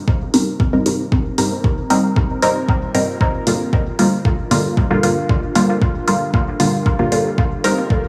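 A straight 4/4 pulse at 115 BPM, driven by an up-front, deep electronic kick with a layered electronic hi-hat above it, anchors this nocturnal dub techno passage in G minor, where a muted, detuned sawtooth-and-square chord stab with a sub octave, phaser and dub echo pumps over Cm7 and Gm7 while a moody, slow-attack pad with chorus and long release sits in the background, all bathed in a huge ambient reverb with a 4.7 s tail.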